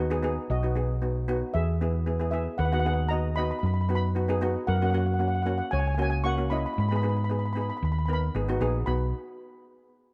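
Bright, shimmering double-second steel pan played with hard rubber sticks sits up front as the accompaniment in this festive, sunny calypso cut from a longer piece, matched by a round, dark, amped hollow-body electric bass, while a mellow lead pan on soft rubber sticks carries the melody more softly from 0.5 seconds in a rough home demo mix with light studio reverb.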